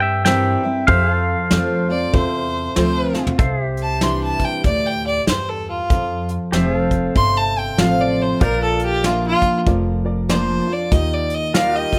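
A swung 4/4 groove at 96 BPM in F major sets up a sunny, heartfelt stretch of honky-tonk and classic country, with soft brushes on an up-front kit, punchy kick and woody, pizzicato upright bass underneath a full-bodied jumbo acoustic guitar, a boxy upright piano in the background and twangy pedal steel chords shaped by volume swells. A bright, compressed electric guitar carries the opening melody until 2.7 seconds, while a biting fiddle with light vibrato joins before a drum fill leads into its solo at 3.4 seconds. The piano drops out just as the solo begins and returns at 8.4 seconds as the chords move through Bb to Ebadd9, all captured with close, detailed microphones and little reverb.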